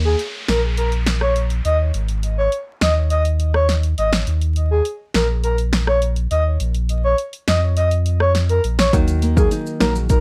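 A breathy, flute-like synth lead carries the melody through this tough, sultry dancehall excerpt, its soft tone colored by chorus, tremolo and tape echo over a deep, sine-like sub bass with octave and a punchy deep house drum kit of deep kick, snare, rim click, finger snaps and dark hats, while a downlifter sweeps through the opening 4.3 seconds. After a long break, fingerpicked nylon-string guitar arpeggios return at 8.9 seconds alongside a hollow, bouncy square pluck with sidechain pumping and faint maracas in the background. The mix is dry, with vinyl crackle running throughout.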